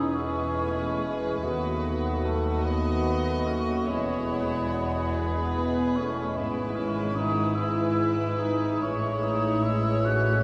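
Warm and serene, this slow romantic orchestral passage drifts at 48 BPM in a rubato 12/8, settling into E major from 6.4 s and cut from a longer piece. Two violin sections carry the melody and a second line with pure, floating sul tasto tone, joined by a hollow flute, a distant clarinet and cor anglais, while a woody viola section, bassoon and dark French horn chords fill the background over bowed cellos and double basses. A church reverb with a 3.2 s tail surrounds the ensemble as the harmony moves from E through B7/D# to A.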